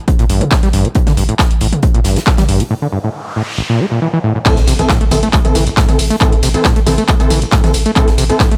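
A dry mix carries this intense, hypnotic peak-time techno at 137 BPM in A phrygian, where a punchy, up-front electronic kick and a techno kit of metallic hi-hats, handclaps, tambourine, toms, ride and crash with sidechain pumping drive a squelchy, gritty acid bass riff with digital delay and a deep, saturated sub bass, while an airy studio kit's hi-hat and snare sit in the background, a noise sweep and impact arrive at 3.0 seconds during the break, and an aggressive, detuned rave stab with chorus and reverb enters on the Am drop at 4.5 seconds.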